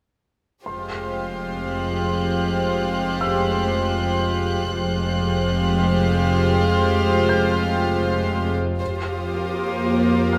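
A soft-edged violin section floats up front in this eerie, mysterious cinematic excerpt, bowed sul tasto with a pure, close tone as it carries a second line from 0.6 seconds. Beside it, a rich viola section, also up front and sul tasto, holds the accompaniment, while cello and double bass sections supply a deep, pure bowed foundation. High above, a small chamber violin section adds an intimate texture with light vibrato, and a clear grand piano sits in the background, its natural action noise audible in the high register. The harmony rests on a dark minor chord with an added ninth before easing onto a suspended chord at 8.8 seconds. A moderate concert hall reverb surrounds the ensemble, and all six parts continue together until the fragment breaks off at 10.4 seconds.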